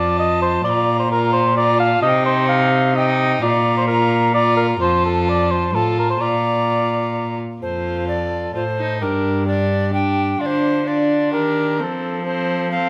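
From the first beat, an airy alto recorder carries the melody with vibrato over a dark cor anglais second line, a gut-string viola accompaniment and a rich, up-front bowed cello bass in a rustic yet solemn Renaissance-style consort dance in 3/4 at 130 BPM, set in a moderate recital-hall reverb and cut from a longer piece.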